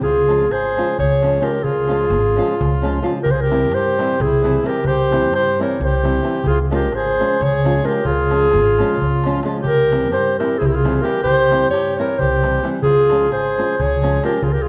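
Restless and virtuosic, this short cut from a longer Balkan wedding band piece moves in a brisk 7/8 with a straight feel. A mellow clarinet carries the melody up front, its smooth top and classical style giving the solo line a poised, singing quality. Behind it, a reedy, hollow accordion plays a second line, while a small, dark nylon-string guitar fingerpicks the accompaniment and a woody pizzicato upright bass with steel strings anchors the low end. A crisp metal-shell darbuka played with soft hands sits in the background. The harmony rocks between Db and C as the opening passage repeats at 6.4 seconds, and the whole band is bathed in the reverb of a wet recital hall.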